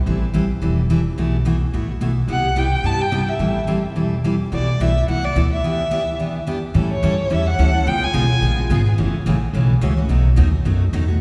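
A swung 4/4 pulse at 215 BPM drives this fiery, swinging excerpt of acoustic string swing in the jazz manouche style, cut from a longer piece. The upright bass anchors the low end with woody, thumpy pizzicato on gut strings, while a picked steel-string acoustic guitar supplies bright, full-bodied accompaniment from a jumbo body with fresh strings and audible finger squeak. At 2.3 seconds a single bowed violin takes the melody, singing with vibrato, portamento and expressive, warm tone until 8.9 seconds. A short break arrives at 5.6 seconds before the harmony moves on from a rotation of Am7, B7sus4, Cmaj7 and Em7 into a second section of A7, C#7, F#m7 and B7. All three instruments sit up front, bathed in a long, wet church reverb that gives the recording the sense of a large, resonant hall.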